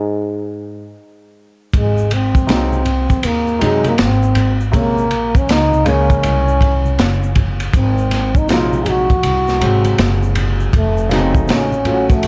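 Nocturnal and mellow, this 80 BPM jazz-hop excerpt with a swung 16th feel opens with a breathy, whispered trombone playing alone until the pizzicato upright bass, a gritty, saturated breakbeat kit with dark cymbals and a tight kick, and a bright, close egg shaker and congas in the background enter at 1.7 seconds, followed by an intimate, woody upright piano with audible action noise at 2.5 seconds, as the chords move from Ab7 through Bbm9 to F7b9b13.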